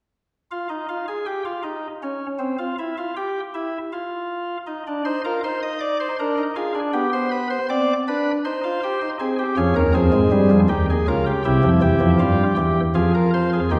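A chamber organ sounding its cornet stop carries this serious, solemn baroque-style fugue in three parts, its nasal solo voice marked by a chiff at the start of each note and sitting up front in the sound. Set in F minor at 80 BPM in a straight 3/4, the organ plays alone from 0.5 seconds to 13.8 seconds, spanning a range from C2 up to Eb5. The opening stretches unaccompanied by harmony before the chords arrive around 4.7 seconds with C minor, then move through Bb over D, G over B and C minor over Eb before settling on F minor at 9.2 seconds. From there the harmony passes through E-flat and C, resolving back to F minor at 13.0 seconds. The instrument is heard from further back in a reverberant recital hall, whose 1.6-second decay lends the passage a spacious, churchly halo. This is a cut from a longer piece, ending as the fugue's harmonic cadence lands.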